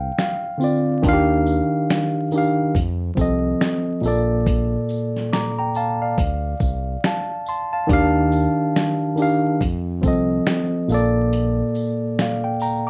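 A worn, slightly out-of-tune tine electric piano opens this nostalgic, cosy lo-fi hip hop excerpt in Bb major at 70 BPM, heard up front through cassette tape and a low-pass filter, moving through chords such as Ebmaj9, F7 and Bbmaj7 over a smooth, detuned sawtooth-and-triangle synth bass. At 0.2 seconds a gritty, compressed sampler-style drum kit joins with a thumpy kick, fat snare, hi-hat, shaker and finger snaps, swung on the 16ths and re-recorded in a large room, while a jingly, saturated tambourine sits in the background from 0.6 seconds. Light reverb and vinyl crackle give it the feel of a rough home demo, and the bass drops out at 11.6 seconds during the closing break.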